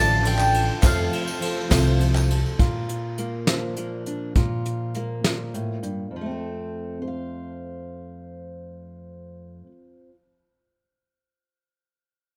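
A mellow, round mandolin with tape echo opens the melody at 0.0 seconds, over a dark upright piano, a bright, shimmering twelve-string acoustic guitar and a sul tasto chamber string section holding soft, lightly vibrato chords in the background, while a woody, thumpy pizzicato upright bass sits up front. This is anthemic, warm indie folk in F major, moving in 6/8 at 68 BPM (dotted quarters) with a straight feel and tuned to A4 = 439 Hz. The harmony moves from Dm to F, then to Bb at 2.6 seconds and back to F. A brushed drum kit with a fat snare and punchy kick enters just after the start and plays until 6.0 seconds, joined briefly by crisp, very quiet group handclaps and a jingly tambourine set back in a small room. By 2.6 seconds the other opening layers have fallen away and a fingerpicked steel-string acoustic guitar takes over up front alongside the brushed kit, carrying the building arrangement forward under light reverb in this piece cut from a longer recording.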